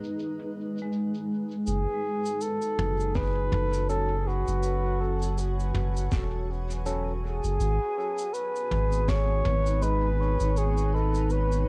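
Deep and meditative, this ambient dub passage moves at 81 BPM in 4/4 with a swung sixteenth feel, set in F# dorian and cut from a longer piece. A cloudy, blurred granular pad holds sustained chords throughout, while a soft brush kit of cabasa, snare and toms, muffled by filtering and dub echo, brushes along beneath it, and a very quiet bubbling stepped-filter texture drifts in only for the opening moments. A vibraphone with medium mallets adds brief metallic, ringing arpeggios with grainy sampler grit before the bucket-muted trumpet takes the solo at 1.7 seconds, dark and veiled with light vibrato, sitting up front alongside a round, deep sub bass with tube saturation. A thumpy, tape-softened electronic kick enters at 3.2 seconds in the background, and a barky, lightly overdriven tine electric piano adds faint stabs from 3.9 seconds. The harmony rests on G#m, shifts to F#5 as the trumpet enters, and returns to G#m near the close, all captured as a dry, intimate home cassette recording.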